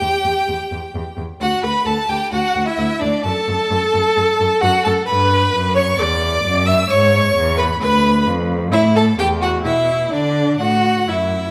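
A moderate recital-hall reverb gives this short excerpt from a longer movement a natural sense of space, with the cello sitting up front and the first violin sounding somewhat distant. It is a quick, cheerful and spirited classical-period piece for string quartet in 4/4, played with a flexible, rubato feel. The first violin carries the melody with a clear, focused, bowed tone and vibrato, while the second violin plays a supporting line beneath it in much the same manner. The viola fills in the accompaniment with a rich, smooth and even sound. The cello anchors the bass with an expressive voice, adding vibrato and portamento slides. The four players sound together for the whole 11.5 seconds, moving through harmonies that begin on Em and touch F#m, G#dim7 and Bm before settling on A5.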